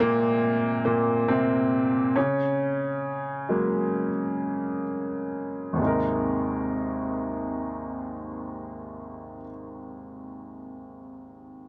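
A dry, close 1970s-style studio sound frames this tender, heartfelt pop fragment in Ab mixolydian at 63-70 BPM, where a bright, woody upright piano with long sustain sits up front, playing alone as the tempo slows through the first 5.8 seconds and moving from Abadd9 to Gbadd9 before returning to Abadd9 at 5.8 seconds.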